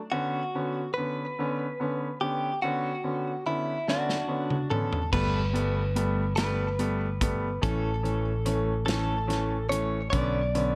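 A six-eight pop ballad at a slow 48 beats per minute in dotted quarters, this short passage cut from a longer piece feels romantic and swaying. A clean, direct-recorded electric guitar carries the melody from the start, its bright, picked tone compressed and colored by phaser and digital delay, while a brilliant, woody upright piano supplies the accompaniment up front beside it. A modern studio drum kit of toms, snare, kick, hi-hat and crash enters at 3.9 seconds with a fill, its punchy kick and medium-tuned snare sitting mid-forward with a rolled-off top. At 5.1 seconds a new section begins as a growly, amped fretless bass joins low in the mix's foreground, thickened by analog chorus. The harmony moves from Bmadd9/D through Gadd9 and A before returning to Bmadd9, all set in a light, small-room reverb.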